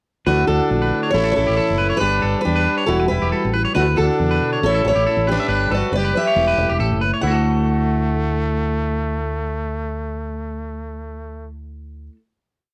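A danceable, warm highlife piece at 138 BPM in D major, with a light swing on the sixteenths and a homespun cassette sound in a lightly reverberant room. Up front, a bright, full-bodied fingerpicked steel-string acoustic guitar carries the melody in hook-like motifs, partly doubled in thirds, with audible finger squeak and a tape-worn analog delay on its tone. A raspy, growling trumpet, close-miked and gritty, adds a harmony line mostly in sixths with vibrato and scooped notes, dropping out at 11.5 seconds. Beneath them, a slightly broken-up, twangy electric guitar picks an arpeggiated ostinato, while a dark, clean, compressed electric guitar plays syncopated fingerstyle accompaniment in the background. A round, punchy fingered electric bass drives a syncopated riff as the chords cycle through Dadd9, A, G and Em shapes before settling on a final Dadd9 at 7.2 seconds.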